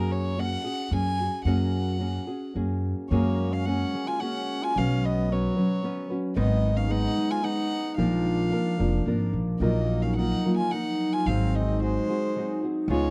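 Festive and proud, this mariachi-flavored Mexican folk excerpt moves in a rubato 3/4 at about 110 BPM in F# major, with a reedy, gut-string bowed violin carrying the melody over fingerpicked nylon-string guitar and a woody, thumpy pizzicato upright bass sitting up front. At 3.1 seconds a mellow solo trumpet with light vibrato adds a second line, while a ringing concert harp joins with arpeggios touched by tape echo. Harmonies pass from F#add9 through Bsus2, G#m, A# and D#madd9/A# to G#7, all captured in a dry, close 1970s-style studio sound with light reverb.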